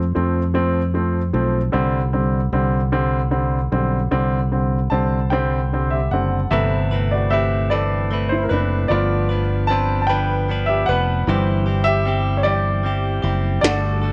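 A polished baby grand piano and a round, fingered electric bass open this tender, romantic pop ballad in six-eight, moving at a slow 50 beats per minute over chords of F and Csus2. Both sit up front in the mix, with light reverb and a soft top end. At 6.5 seconds the piano steps forward into a solo as a bright, twangy clean electric guitar enters with picked arpeggios, its compressed direct tone bathed in spring reverb and set a little further back. The harmony shifts through Amadd9/G, G7 and C/G beneath them. At 13.6 seconds a tiny, overdriven electronic snare punches in up front with a brief fill just before the cut, a passage lifted from a longer piece.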